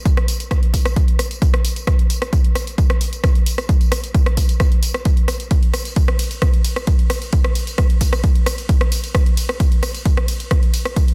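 A straight 4/4 techno pulse at 132 BPM drives this intense, dark excerpt, with an overdriven electronic kick drum sitting up front and punching dry and hard from 0.1 s to the end at 11.1 s. Beneath it, an analog drum machine supplies hi-hat, ride cymbal, rim click and tambourine, its gritty, distorted hats, cymbals and percussion pumping with sidechain compression. Both parts carry studio ambience within a digital ambience, and the dense, heavily limited master keeps the sound tight and aggressive.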